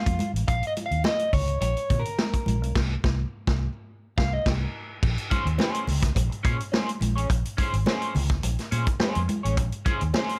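A light reverb gives this funk excerpt a close studio feel, with a hypnotic groove at 106 BPM in Bb minor. A vintage drum kit sits up front with a punchy kick, medium-tuned snare, hi-hat and dark, rolled-off crash cymbal. Beneath it, a foam-muted fingered electric bass plays round, amped low notes. An electric guitar at the edge of break-up carries a slightly gritty, picked accompaniment through a wah, while bright, high-tuned congas played with hard hands sit in the background. A clean electric guitar solo runs through the first 5.0 seconds, opening over a Bbm chord, with the band hitting accents on C7(no3) from 2.8 seconds. At 5.0 seconds the harmony settles onto Bbm9 for the second part of the groove.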